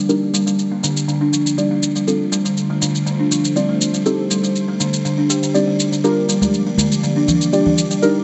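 A straight 4/4 groove at 121 BPM propels this driving, spiritual afro house fragment in G minor, where an electronic shaker ticks beneath up-front kalimba arpeggios that sound woody and buzzing through a low-pass filter and digital delay, deep, detuned chord stabs with chorus and delay, and a smooth sawtooth pad sustaining in the background, the kalimba, stabs and pad each carrying a filter sweep over Ebmaj7, Dm7, Am7b5 and Gm7, while bright, close congas join at 6.4 s, the mix set in a lush hall reverb with a muted top end.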